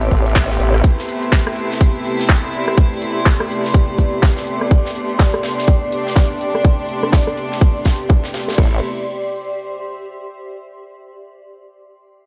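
A light reverb lends this bass house excerpt some space at 124 BPM in 4/4, with a swung sixteenth-note feel in A minor that comes across as aggressive and bouncy. Up front, a tight electronic kick anchors the groove alongside a garage drum kit of crisp, low-passed hats, handclaps, rim clicks and crash cymbal. A quieter acoustic metal kit, whose high-passed snare and hats carry an airy, big-room quality, enters shortly after, and a filter sweep runs across the drums until 8.6 seconds. A nasal, saturated vowel-sweep wobble bass sits on A1 with chorus and sidechain pumping, heard only in brief bursts at the opening and again around 8.6 seconds. Above it, a bowed string section holds reedy, gut-toned Amadd9 chords with light vibrato and sidechain pumping, before the harmony settles on Am. Over the top, a bright granular cloud pad drifts and evolves in a blurred shimmer, carrying on alone after the other parts stop, until 10.5 seconds.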